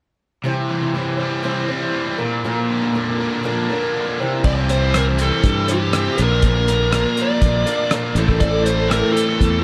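A straight 4/4 pulse at 120 BPM drives this hopeful folk rock and heartland rock passage in C mixolydian, cut from a longer piece and moving through C, Bb and Am chords. From 0.4 seconds a picked twelve-string acoustic guitar plays a woody, boxy accompaniment with old-string darkness and an octave-doubled shimmer. Alongside it, a cranked stack guitar plays a bright, double-tracked overdriven riff up front. At 4.4 seconds the band fills out: a fingered electric bass arrives growly and punchy, a cloth-damped drum kit adds thuddy kick, hi-hat, rim clicks and dark crash cymbals with a tight, rolled-off sound, and a bluesy distorted lead guitar carries the melody in a dark upper register. Tape echo colours the guitars and drums within an echo-heavy, lightly reverberant mix that shows lossy compression artefacts and has a warm glow.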